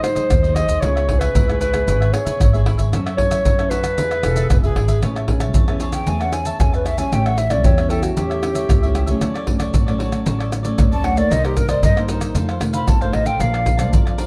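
Samba and choro, lively and festive, with a mellow, distant clarinet stating the melody in plate reverb over crisp picked cavaquinho, a small fingerpicked nylon-string guitar and close, dry percussion of maracas, pandeiro, tamborim and deep surdo played with hard hands up front. A woody pizzicato upright bass joins at 0.2 seconds, and a breathy, hollow jazz flute with vibrato and lifted highs enters at 4.2 seconds as a second line before taking a solo from 5.0 seconds. Extended chords such as Amaj9, Cm9 and F13 colour this excerpt, which has a dark, warm production and light reverb.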